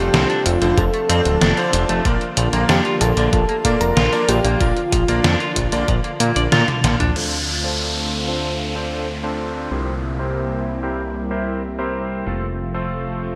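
Nostalgic and romantic, this synthwave excerpt moves at 94 BPM in F major, with a round, octave-layered synth lead carrying the melody through chorus, tremolo and delay while a dreamy, very quiet FM electric piano traces a second line above it and a clean, twangy electric guitar picks delayed arpeggios. Underneath, a lush, warbling unison pad pumps against the beat, a fat sawtooth analog bass sits up front, and a bright, clangy electric grand piano punches chorused stabs, joined by a detuned 8-bit drum machine with gated reverb and a knocking, tape-warm electronic kick. After a drum fill, the second section opens at 7.2 seconds on Dm7 as a downlifter sweeps in and a filter sweep runs over the grand piano, all set in a lush hall reverb with bright 1980s-style digital production.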